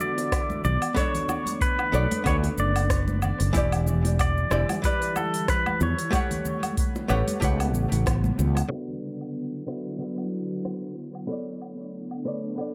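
A warm, up-front fretless electric bass anchors this relaxed sunset chillout piece at 93 BPM with a gentle 16th-note swing, moving beneath D69, Bm9, Em7 and A13 chords alongside an overdriven electronic kick and a deep house kit of smooth hi-hat, rim click, shaker and woodblock. A bright, twangy pedal steel guitar carries the slide melody with volume swells and tape echo until 6.7 seconds. A dark, clean archtop guitar comps through tape echo, and an ethereal, detuned pad with ensemble chorus and background bongos and congas fill the echo-heavy mix, before a filter sweep on the archtop from 8.7 seconds closes this section of a longer piece.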